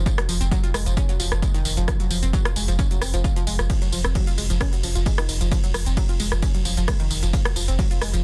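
A nasal, detuned analog pluck carries the riff in this hypnotic, industrial slice of driving peak-time techno, a sawtooth tone with a noise layer and a fast, filtered attack that decays quickly, colored by chorus, phaser, tube saturation and tape echo, and pumping against the sidechain. Beneath it, a deep, thick sub bass holds F1 with a triangle-like, saturated body and sustained notes, rounded off by a low-pass filter and also pumping. A punchy, layered electronic kick enters at 0.1 seconds and drops out at 7.9 seconds, driving a straight 4/4 at 132 BPM in F phrygian, tuned to A4 = 444 Hz. The techno kit adds smooth hi-hats, ride cymbal, rim click and tambourine, with sidechain pumping on the hats, percussion and cymbals, while the kick and kit share a tape-kissed character from being re-recorded in a small room. The sound is dry, with a dense, heavily limited modern master, in this 8.2-second cut from a longer piece.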